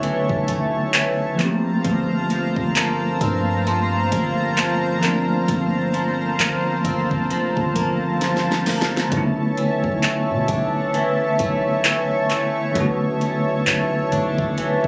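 Sensual and late-night, this contemporary R&B excerpt moves with a swung sixteenth-note feel as a bell-like tine electric piano accompanies and a shimmering, detuned pulse-width pad sustains the chords, shifting from Bm11 to Gm11 at 1.4 seconds and back at 9.1 seconds. A boxy picked acoustic guitar plays arpeggios through a delay, while a deep, sine-toned 808-style bass sustains long, mellow notes underneath. An up-front electronic drum kit with a knocking kick, fat snare, metallic hats, handclaps and gritty vintage sampler texture adds a fill at 8.2 seconds, all heard through a phone-in-the-room sound with club reverb and compression.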